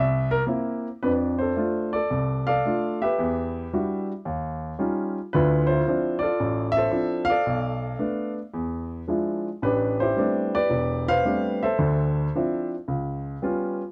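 A grand piano carries this brief solo jazz passage from 0.0 to 13.8 seconds, its tone warm, polished and up front, with a short sustain. The mood is playful and swinging, with a swung eighth-note feel that loosens into rubato, so the pulse bends freely. The harmony moves through rich extended colours, stepping from C7 and F6 into a chain of ninth chords before Bm7b5, E7b9 and Am11 set up a closing turn to Db7#11. The playing spans the instrument's deep low register up into its upper middle. The sound is dry and intimate, captured by close, detailed microphones that make the piano feel present in the room, and the passage is cut from a longer piece.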